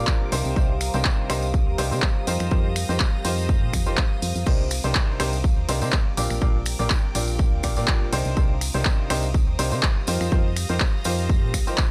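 A swung groove at 123 BPM drives this energetic, bittersweet piano house cut in C minor, where an up-front punchy electronic kick and an overdriven analog drum machine with snaps, claps, hats and cymbals ride over a faint tambourine, while a round, tube-saturated FM bass, a clear but worn grand piano riff, biting background violin chords and a moody detuned pad with chorus all pump against the sidechain through Cm9, F9sus4 and Bb6 in a dry, gritty mix.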